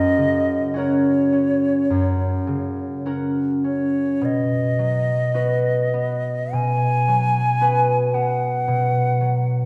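In a free, rubato 4/4 at a slow 49-57 BPM, this lyrical romantic classical duo in B major unfolds over a brief passage cut from a longer piece, its harmony moving from F# to B at 4.2 seconds. A mellow silver concert flute carries the melody up front, airy and expressive with gentle vibrato and a soft attack. A concert harp supplies fingerpicked, ringing accompaniment, with the pair set in the lush reverb of a resonant concert hall.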